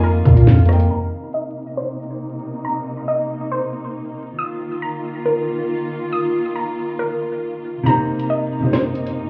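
A half-time drill beat from an electronic kit with a hard-clipped kick, sharp snare and bright hats sets a tense, menacing hip hop mood, as a growling 808-style bass and a faint, gliding portamento lead appear only in the opening second, a warbly, detuned dusty pluck plays arpeggios through a long filter sweep over veiled, con sordino strings, and the drums return at 7.9 seconds with the kick muted alongside a dark baby grand piano, the whole mix sounding muffled through a wall with club reverb and vinyl crackle.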